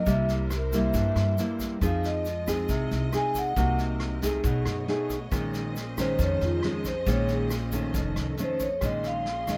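Bossa nova in Bb minor at 137 BPM, this melancholic, wistful excerpt is cut from a longer piece and moves with a straight 4/4 feel. A mellow vibraphone played with soft mallets and the motor off carries the melody as a solo from 0.0 to 8.8 seconds, its close-miked, dry, ringing tone sitting full in the foreground. An up-front nylon-string guitar, thumb-plucked in a classical manner, supplies the accompaniment, while a woody, thumpy pizzicato upright bass anchors the low end. A vintage brush drum kit with a punchy kick, rim click and medium-tuned snare sounds distant and roomy with a rolled-off top, and a grainy, bright egg shaker ticks along in the background. Behind them, a lush bowed string section holds sustained chords with focused vibrato, as the harmony passes through colours such as C7, Cm7b5, B13 and F7b13 before settling on Bbm11.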